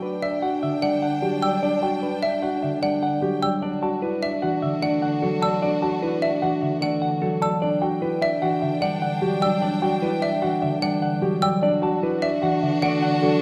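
Bright and hypnotic, this 150 BPM minimalist classical pattern piece in 5/4 and E minor, cut from a longer piece, sets a dark, clean semi-hollow electric guitar melody over thumb-plucked, ringing concert harp accompaniment, mellow grand piano arpeggios with audible action noise, sustained chords from a focused violin section with vibrato, and sharp, woody xylophone arpeggios entering at 0.2 seconds, all circling between Em7 and D in a wet recital hall reverb.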